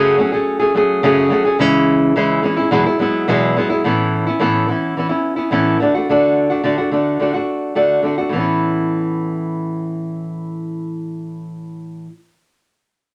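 Heartfelt and easy-going, this short pop piece, cut from a longer work, moves at 107 BPM in a straight 4/4 feel in A major. A single acoustic flamenco guitar carries everything from start to finish, fingerpicked and placed up front, with a dark tone ranging from E2 up to G#4. The harmony opens on F#madd9, passes through C#m and Eadd9, then settles onto Aadd9 at 3.8 seconds before moving to D. A new passage arrives at 8.3 seconds, returning to Aadd9. Moderate studio reverb gives the guitar a gentle sense of space.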